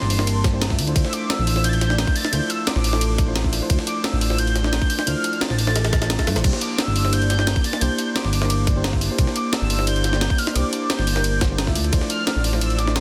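Liquid drum and bass at 175 BPM in D minor, dreamy and soulful, where a velvety high synth lead with chorus and tape echo floats over a warbling, round FM electric piano, a detuned analog pad in the background, and a dark gliding synth bass up front, while gritty, pitched-up breakbeat and jungle sampler-style kits are joined at 0.4 seconds by a tight layered kick, all within a dense, heavily limited mix with light reverb moving between C9 and Dm9 chords.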